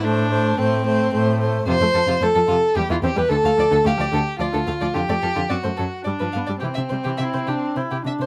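The second violin sits up front with a rich, focused, vibrato-laden tone on its supporting line, while the first violin carries the melody above it in a lively, cheerful classical-period movement for string quartet at 110 BPM in 3/4, cut from a longer piece. Beneath them, the viola's smooth, even accompaniment and the cello's clear, close bass line follow a brief progression that opens on A minor, pauses on a bare moment at 4.9 seconds, then resolves to C major at 6.6 seconds. Close, detailed microphones and little reverb keep each bowed voice intimate and distinct.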